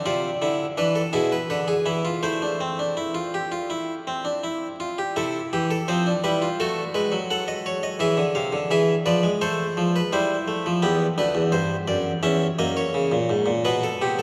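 A bright, plucked French-style harpsichord sits up front from the first moment, playing a lively, joyful baroque-style three-part fugue in A minor at 85 BPM in a straight 4/4, its single set of strings carrying a mid-forward edge across a range from D2 to F#5. The solo instrument rings through a vast, echoing cathedral, whose long reverb tail of 5.2 seconds blooms around every note. In this 14.2-second cut from a longer piece, the harmony moves from Cadd9 through E7 to Am, with a second passage from 5.2 seconds wandering through B7, Em and F#7/E before pausing on B7.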